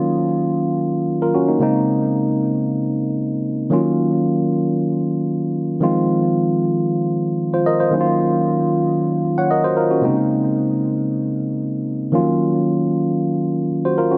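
Amapiano with a late-night, soulful mood, this short passage cut from a longer piece moves at 114 BPM in a straight 4/4 and sits in Eb dorian, tuned slightly low to A4 = 439 Hz. A tine electric piano plays alone for the full 14.2 seconds, ranging from C3 up to Gb5. Its tone is clean and direct, placed up front in the mix, with a digital delay trailing its notes. The harmony circles through rich minor chords, Ebm9, Bbm11 and Fm7, returning again and again to Ebm9. A light reverb gives the sound a touch of space while keeping the piano close.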